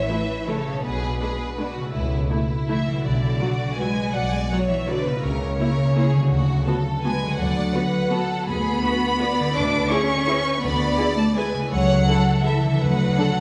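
Festive and sweeping, this orchestral ballroom waltz excerpt sways in triple time with uneven beats and a flexible rubato pulse. A lush, distant symphonic violin section sings the vibrato-rich melody above a close, smooth studio violin section on a second line, while an expressive viola section adds portamento-tinged accompaniment and a ringing, fingerpicked concert harp spins out arpeggios. Bowed cellos and double basses anchor the bass, and the whole ensemble sits in the reverberant, soft-topped acoustic of a church or concert hall.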